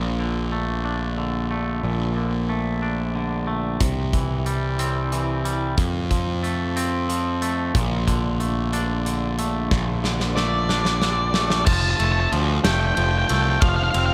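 A slow 6/8 pulse at 61 BPM, counted in dotted quarters with a straight feel, carries this cinematic, hopeful post-rock passage in F major, cut from a longer piece. A clean, twangy electric guitar plays fingered arpeggios up front with a slapback echo, joined from the start by a round, overdriven fuzz bass, picked and direct, sitting low and forward in the mix. The big rock drum kit enters at 3.8 seconds with a punchy kick, a medium-tuned snare, hi-hat, ride and crash, its acoustic sound mid-forward with a rolled-off top and the feel of a big room. The chords move from Bbmaj7 through C and F back to Bbmaj7, and a drum fill at 9.7 seconds leads into a build-up from 11.7 seconds that settles on F and then F5. At 10.4 seconds a dark, distorted octave-fuzz lead guitar takes the high melody, picked and treated with slapback echo, over a dry recording with little reverb.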